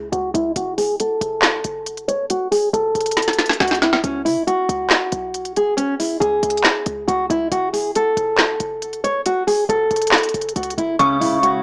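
A half-time trap groove at 138 BPM in 4/4 drives this dark, menacing hip hop excerpt. An overdriven electronic kit sits up front, with a woody snare, crisp hi-hats and handclaps, and a drum fill arrives just before 4.0 seconds. Beneath it, a short, punchy 808-style bass with a sine body and a noise layer hits with a fast attack and decays tightly. The lead is a thumb-plucked classical nylon-string guitar, close and prominent, shaped by a low-pass filter sweep over the opening seconds and a tape echo, moving over harmony built around F#m. At 11.0 seconds, as the harmony turns to C#m, an eerie, inharmonic detuned synth bell with chorus and tape echo appears alongside a mellow grand piano with audible action noise, and moments later a glassy, warbling FM pad with ensemble chorus and built-in reverb joins faintly in the background. The recording has a dry, gritty hardware character, with a small-speaker sound and digital ambience.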